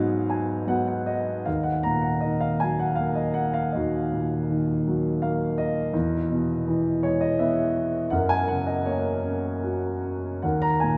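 A concert grand piano opens with a brief fill over an Abm7 chord, then settles on E-flat minor at 1.5 seconds. This is a moody, brooding passage of lyrical classical solo piano in 3/4, moving at about 80 BPM with uneven beats and a free, rubato feel. The single piano spans Eb2 to Bb5, its tone warm and open, with a deep bass and long sustain, and it sits up front in the sound. A second short fill arrives around 4.9 seconds, and the harmony passes through E and G-flat before returning to E-flat minor near the close. A wet cathedral reverb with a 6.0-second decay places the instrument in a vast, echoing space, and the moment is cut from a longer piece.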